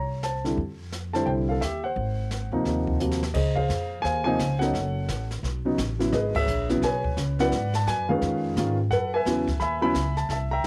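Jazz piano trio in a relaxed, playful swing at 173 BPM, this short excerpt from a longer piece has an intimate baby grand piano carrying the melody up front, its action noise audible and its tone colored by cassette tape, over a woody pizzicato upright bass. A brushed drum kit with dark cymbals and a boomy kick, also taped to cassette, enters at 0.2 seconds and plays a fill from 3.0 to 3.4 seconds leading into a new section, and the band hits an accent at 6.3 seconds. The home cassette recording sounds dry, with little reverb, as chromatic harmony moves from C7 through Dbmaj7 and E6 to a closing Gbm11.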